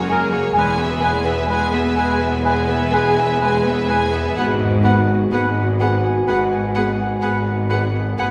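Bathed in a wet concert hall reverb, this short cinematic passage in G# minor unfolds at a rubato 63 BPM with a longing, moving mood. A clear violin section with vibrato carries the melody over an expressive second violin line, a rich viola section and mellow French horn chords, while a focused cello section and smooth double basses hold the bass and a very quiet, ringing harp plays arpeggios. From 0.1 seconds an airy flute ensemble and a solo oboe with light vibrato add second lines as the harmony moves from F#add9 through E to G#m7.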